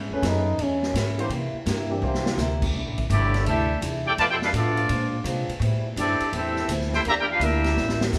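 Heard as a band playing live in one room under a wet studio reverb, this joyful, energetic big band swing excerpt opens with a mellow, close-miked trombone soloing over a trombone section holding sustained chords, with a warm grand piano joining in the background at 1.2 seconds. Throughout, a bright, picked parlour acoustic guitar, a woody pizzicato upright bass up front and a distant, roomy drum kit with dark cymbals and a boomy kick keep the swing moving, and the drums add short fills. At 3.1 seconds a tight, clear trumpet section takes the melody with light vibrato, while a present trombone section in the background carries a second line.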